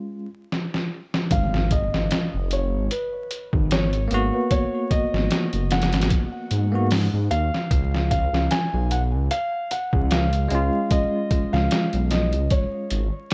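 Melancholic and hypnotic, this slow, swung trip hop excerpt in G# dorian at 75 BPM opens on a bell-like tine electric piano with tremolo over a brief break and a drum fill from the muffled, overdriven sampler-style kit at 0.5 seconds, then at 1.3 seconds a felt-muted upright piano melody with tape echo, a deep, rumbling detuned saw bass and a very quiet electronic impact arrive as the chords move from G#m7 to C#, all in a dark, dry production dusted with vinyl crackle.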